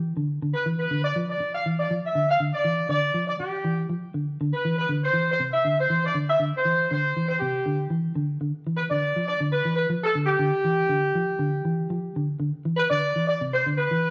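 A horn section carries the melody in this funky, joyful afrobeat passage, entering at 0.5 seconds with a warm, roomy ensemble tone that sits up front yet carries a distant, pop-style sheen. Beneath it, a clean electric guitar plays dark, fingered arpeggios in a low register from the very start, giving the groove a steady straight-time pulse in 4/4. The harmony opens with the guitar and horns unanchored by any chord, then moves through C at 4.5 seconds, a G5 power chord and finally Cmaj7 as the passage closes. The band was recorded playing live together in one room, and a generous, wet studio reverb lends the whole performance a spacious, lively glow. Cut from a longer piece, the section runs just over 14 seconds as a single buoyant stretch.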